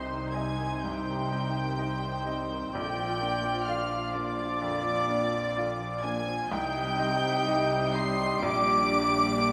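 A floating, sul tasto violin section carries the melody high above the orchestra in this moving, bittersweet cinematic cue, a short cut from a longer film score in a flexible, rubato feel. Close beneath it, an airy flute section with gentle vibrato and a mellow, distant cor anglais shape second lines, joined in the background by a solo clarinet and a second violin section. A brilliant baby grand piano with long sustain sits behind the strings as accompaniment, while a very quiet, woody viola section adds lush support. Dark French horns hold sustained chords from afar, and cellos and a smooth-topped double bass section anchor the low end. The harmony moves from Cm to Bb, back to Cm at 6.5 seconds and on to Gm/Bb, all bathed in a wet concert hall reverb.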